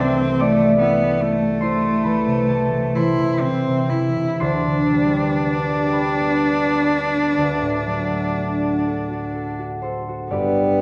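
In a rubato 12/8 lilt at 39-52 BPM counted in dotted quarters, this serene romantic classical duo sets a rich, smooth, even bowed cello melody with vibrato between A3 and E4 over a warm, thumb-plucked concert harp accompaniment that rings from G1 to E6, both parts up front throughout this 10.8-second fragment of a longer piece, while a recital hall's reverb, heard from further back in the room, lingers around them as the harmony moves from Am/C to G/D at 4.4 s and D at 7.4 s.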